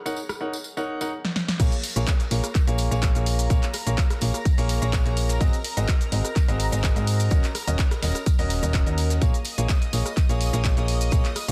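A straight 4/4 groove at 126 BPM drives this bittersweet, energetic piano house clip in Bb minor, as a punchy analog drum machine with a clipped snare, claps and hats and a very quiet tambourine open beneath a clear, woody upright piano riff carrying vintage 12-bit grit and delay, with a silky, detuned string pad shimmering in the background through chorus and phaser. After a drum fill from 1.2 seconds, the drop lands at 1.6 seconds with an up-front, tape-tinged electronic kick, a round, dark FM bass and a faint, gritty sampler-style kit, while sidechain pumping moves the bass, piano and pad. Chords move from Ebm7 through Bbm7 and Ab7, all set in digital ambience under a dense, heavily limited modern master.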